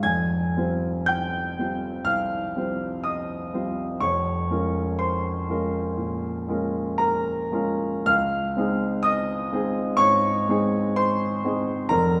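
The pulse is loose and elastic, a slow 4/4 at about 61 BPM that stretches and bends with rubato, so the beats fall unevenly. This short passage of impressionist solo classical piano sits in F minor, tuned slightly low at A4 = 437 Hz, and carries a nocturnal, mysterious mood across its 12.2 seconds. A single warm, natural-sounding grand piano plays throughout, placed up front, with a long sustain and a reach from F1 in the deep bass up to Ab6 at the top. The harmony drifts from Fmadd9 through Bbm9/F at 4.0 seconds to Dbmaj9 at 8.1 seconds, lending the music a hazy, suspended colour. A wet concert hall reverb with a 2.0-second decay surrounds the piano, letting each chord bloom into the space as this fragment of a longer piece unfolds.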